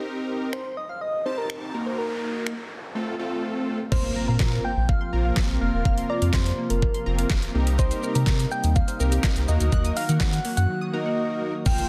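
Dance-pop at 124 BPM with a summery, euphoric mood, opening on a big, bright, fat polysynth pumping with sidechain over chords moving from Cm7 through Ebm and F. A gentle, keys-like FM lead with chorus and delay carries the melody, while a smooth R&B drum kit with a knocking kick, deep soft-clipped snare, metallic hats, snaps, claps and shaker sits up front, and a noise sweep leads into an impact at 3.9 seconds. From there a round sine sub bass, an airy, smooth supersaw holding chords and a background analog pluck with an evolving filter sweep join the groove, before a break at 10.7 seconds and a final impact close this cut from a dense, heavily limited track.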